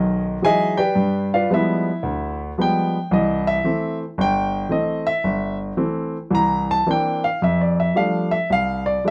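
Sophisticated and warm, this short excerpt from a longer solo jazz piece features a grand piano alone from 0.0 to 9.1 seconds, played with a swung, rubato feel in 4/4. The piano sounds present, polished and up front, ranging from G1 to Bb5 over rich chords such as Emaj9, G7b9, C6, C9 and F69. A moderate club reverb and a dark, warm production surround the recording.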